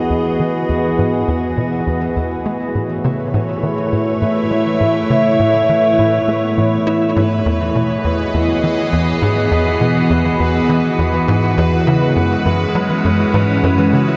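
An evolving, detuned wavetable pad opens this expansive, cosmic stretch of ambient space music, holding sustained chords up front while a concert harp fades in with ringing, fingerpicked arpeggios in the background under a delay. A tight sequencer bass joins at 0.1 seconds with a punchy, driving riff of sawtooth and square-wave plucks, its fast attack decaying through ensemble chorus and delay while a filter sweep runs across it. At 1.7 seconds a bubbling, resonant stepped-filter texture fades in on a single held B4, its random filter steps carried through chorus and built-in reverb. The piece moves at 102 BPM in a straight 4/4 in E major, with the harmony shifting from Emaj7 to A, back to Emaj7, and on to F#sus2. A huge, wet reverb tail of 7.9 seconds wraps the whole mix in a vast, floating space, and the excerpt is cut from a longer piece.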